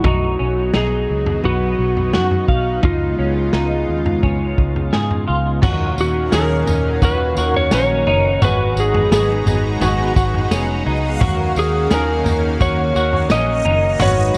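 A straight 4/4 groove at 86 BPM carries this blissful, dreamy dream pop excerpt, built on a muffled, lo-fi vintage drum kit with dark cymbals, tambourine and toms, and a round, foam-muted fingered bass. A slightly broken-up electric slide guitar leads the melody through delay, while a hollow-bodied semi-hollow electric guitar plays fingered arpeggios with ensemble chorus and delay over a lush, detuned unison pad that holds sustained chords, in a small room with light reverb. At 5.6 s a bright, compressed clean guitar, recorded direct and sitting in the background, adds tremolo accompaniment as the chords move from D#m7 to G#m7 and back.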